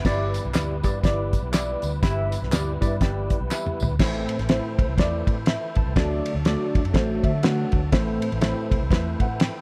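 This is an uptempo 1960s-style soul excerpt at 122 BPM in 4/4 with a swung eighth-note feel, urgent and driving, cut from a longer piece and moving from G6 to Am, D and back to Am. A worn, slightly out-of-tune tine electric piano sits up front through a combo amp, lightly overdriven and phased, playing accompaniment and adding fills. Beneath it a thick, gritty tonewheel organ holds sustained chords with chorus vibrato, key click and a stopped rotary speaker. A dark, foam-muted fingered electric bass gives a round, amped low end, while a cloth-damped, thuddy drum kit keeps a dry, up-front groove with a fat snare, tight kick and dark cymbals. Band-limited tambourine and group handclaps add vintage texture until about 3.9 seconds, just after a drum fill begins at 3.5 seconds and before the second section opens at 4.0 seconds, all under a light reverb.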